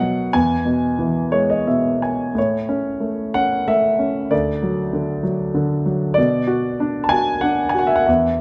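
A smooth, vintage-toned grand piano with short sustain sits up front in this relaxed, lyrical classical solo passage in A major and 3/4, moving with rubato at 83-99 BPM over E, A, D and B minor chords, adding a brief fill from 1.0 to 2.4 seconds within a moderate recital-hall reverb, as part of a longer piece.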